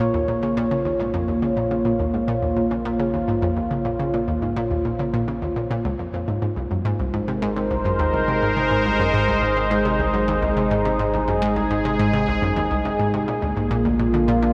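Ambient piece in Bb minor at 105 BPM with a hypnotic, expansive mood, cut from a longer work, where a sweeping resonant pad of evolving, detuned sawtooth chords with chorus sits up front over a bright, round analog pluck riff with chorus and delay, while a deep sine sub bass fades in from 0.0 seconds, all moving from Bbm to Ab at 6.4 seconds and Bb7 at 13.3 seconds in a dreamy mix soaked in huge reverb.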